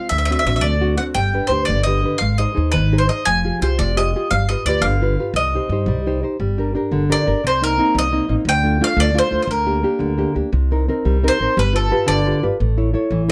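Romantic and wistful, this short Italian folk serenade sways in 6/8 at 116 BPM, moving from C harmonic minor into G minor at 6.4 seconds. A bright bowl-back mandolin, its doubled strings picked up front, carries the melody over dark, fingerpicked classical nylon-string guitar with audible finger squeak, while a woody, thumpy pizzicato upright bass grounds the harmony. The close, detailed recording has little reverb, keeping all three acoustic instruments intimate and present.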